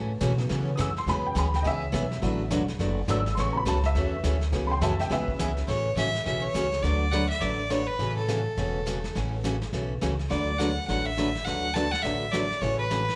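Playful and swinging, this western swing country piece in A major moves at 208 BPM with a gentle swing on the eighths, opening on a detuned, jangly honky-tonk upright piano solo over picked, full-bodied acoustic guitar, thumpy pizzicato upright bass and a vintage brush drum kit with a punchy kick and rolled-off top. At 5.7 seconds a clear, earthy bowed fiddle with light vibrato takes the melody up front, while the piano returns only briefly near 12.6 seconds over sixth chords on A, D and E. Slapback echo colours the piano, guitar, drums and fiddle, and the whole cut has the club reverb of a live gig heard through the venue's PA.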